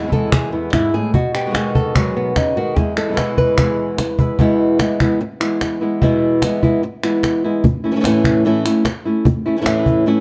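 A straight 4/4 pulse at 148 BPM drives this fiery, proud flamenco passage in E major, cut from a longer piece. A snappy, close cajon with snares and crisp palmas hand claps, heard in a live room, carry the beat throughout, and a fill arrives at 4.0 s. Up front, a fingerpicked flamenco guitar takes the melody from E2 to B4, bathed in plate reverb. A second fingerpicked guitar with fresh strings adds stabs until 4.4 s, after which the lead guitar continues over the percussion. The harmony moves from E through B6 and back to E before settling on A. The production is dark and warm, with a moderate studio reverb lending the acoustic parts a sense of space.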